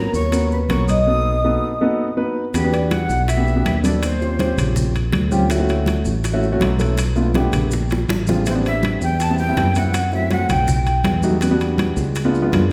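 Sultry and sophisticated, this Afro-Cuban jazz passage in E minor moves at 162 BPM, with a ringing soft-mallet vibraphone melody and a breathy, chiffy flute second line sounding together from 0.0 to 4.7 seconds and again from 8.5 seconds, over a woody, up-front upright piano with audible action noise, a growly fingered electric bass, bright thin-skinned congas, round low-tuned bongos, metal-shelled timbales and grainy maracas, all set in a recital hall's reverb, with a drum fill at 7.9 seconds.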